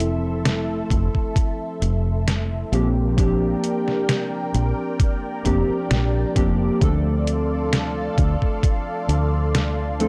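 Vaporwave at a slow 66 BPM with a light swing, this faded, nostalgic excerpt drifts through Fmaj7, Bb69 and Dm7 as warbly, detuned lo-fi synth keys with lush chorus and tape echo sit under a thick, bright unison pad treated with phaser, while a foam-muted fingered electric bass with tube saturation and an overdriven, detuned 8-bit drum machine carrying hi-hat and snare anchor the groove, joined by a thumpy, up-front electronic kick from 0.9 to 8.8 seconds, all captured as a dry, gritty cassette-tape recording.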